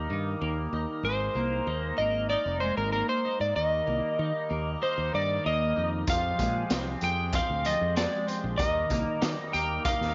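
A slightly broken-up slide guitar, played with fingerpicks and carrying a slapback echo, sings the melody from 1.0 s in this trippy, mysterious psychedelic rock excerpt at 95 BPM, over a bright, phased, double-tracked twelve-string electric guitar riff, a dark, round fingered bass and a reedy, nasal hand-pumped harmonium holding chords that move between Eb, Absus2 and Fmadd9, with a gritty, boomy garage drum kit entering at 6.1 s and a faint, jingly tambourine at 6.7 s, in a lightly reverberant mix with a dulled top end.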